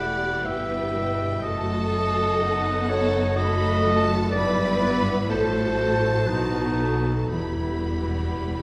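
Bathed in the wet reverb of a church or concert hall, this yearning, melancholic classical fragment in E minor moves in a rubato 3/4 at 55-64 BPM. A lush violin section sings the high melody while a mellow, soft-attack solo clarinet up front and a second violin section with expressive portamento carry inner lines, and a viola section adds vibrato-rich accompaniment. A very quiet, ringing fingerpicked concert harp spins arpeggios as a distant, smooth cello section and a focused double bass section anchor the bass, and hard-mallet timpani join with a dry, articulate fill at 7.3 s.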